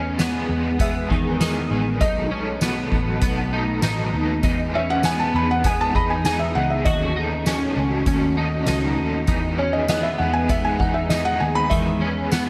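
Floating and dreamy, this dream pop passage, cut from a longer piece, drifts at 99 BPM in E major through Emaj7, B7 and D#m7b5 chords. A felt-muted upright piano carries the soft, intimate melody through tape echo, while a bright, twangy twelve-string electric guitar picks chorused arpeggios, also with tape echo, and an overdriven semi-hollow guitar adds dark accompaniment colored by tremolo and chorus. Beneath them, an airy, detuned pad holds slow-blooming chords in the background, a round, foam-muted vintage bass anchors the low end, and a soft-mallet drum kit with a boomy kick, fat snare, hi-hat and tambourine enters at 0.2 seconds, the whole mix sitting in a small room with light reverb.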